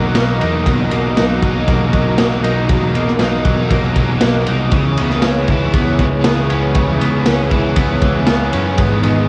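A raw garage drum kit sits up front with a punchy kick, medium-tuned snare and ride cymbal, its small pumping room sound gritty and saturated with a rolled-off top, driving this blissful, hazy shoegaze and dream pop excerpt at 118 BPM in a straight 4/4 over Bmaj7 moving to C#m7 at 4.7 seconds. Two overdriven guitars play riffs, one picked electric treated with analog chorus and a hollow-body semi-hollow further back bathed in reverse reverb, while a dark, round, foam-muted bass holds the low end. In the background, a bright, twangy clean guitar spins arpeggios through lush chorus, analog delay and plate reverb, and a smooth, detuned sawtooth pad with a soft attack sustains chords, all colored by the character of a home cassette recording.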